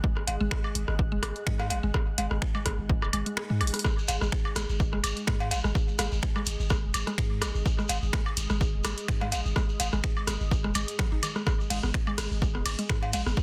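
A punchy, up-front kick drives the pulse at 126 BPM, with a light swing on the sixteenths giving this sparse, hypnotic minimal techno cut its gentle lilt. An analog drum machine adds finger snaps, hi-hat and ride cymbal, while electronic rim clicks, cowbell and woodblock, with tape echo and the roomy tint of a small space, fill in the percussion. A deep sine sub bass with a pitch-drop attack and tube saturation pumps against the kick, and a woody, round FM pluck repeats a mallet-like riff in the background, its chorus and dub echo trailing behind. Beneath it all sits a dark, moody pad of detuned sawtooth unison and a sub octave, slow to rise and long to fade, washed in chorus and its own reverb. The kick drops out at 3.4 seconds for a drum fill at 3.6, and a grainy, distant shekere joins at 3.9 seconds, while the overall mix stays dry, dense and heavily limited.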